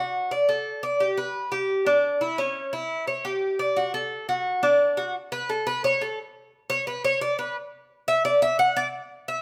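A straight 4/4 pulse at a brisk 174 BPM drives this short, danceable Latin fragment in D major, tuned slightly low with A4 at 436 Hz. A lone acoustic Cuban tres carries everything, its picked double strings ringing bright and metallic, with some strings doubled at the octave. Ranging from C#4 up to F#5, the instrument sits up front, captured by close, detailed microphones. The opening phrase gives way at 5.1 seconds to a new section that works as a featured tres solo through to 9.4 seconds. A moderate, large studio reverb lends the warm playing a sense of space.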